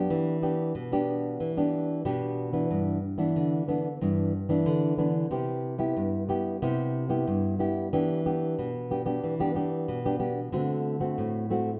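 A solo nylon-string guitar opens on an Em7 and carries this playful, sunny samba excerpt on its own, sitting up front with a thumb-plucked classical touch and the occasional finger squeak. Its chords move through G6, Cmaj7 and back to Em7 before landing on D7 near 10.5 seconds, the section changing at 2.7 seconds. A large studio reverb surrounds the guitar with a roomy, live-in-the-room sound, and the tuning sits slightly below standard concert pitch.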